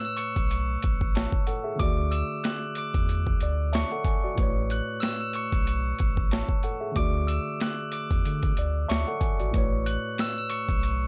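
Soulful and confident, this boom-bap hip-hop excerpt rides a swung groove over chords moving between Aadd9 and D. A ringing, bell-like glockenspiel struck with brass mallets carries the melody through tape echo and filtering, above a worn, slightly out-of-tune tine electric piano with cassette-tape coloring, while a deep, round sine sub bass enters at 0.4 seconds. The sampler-style drum kit sits up front, compressed, pitched down and overdriven, with a thumpy kick, high-tuned snare and hi-hat, all in a dry, gritty mix.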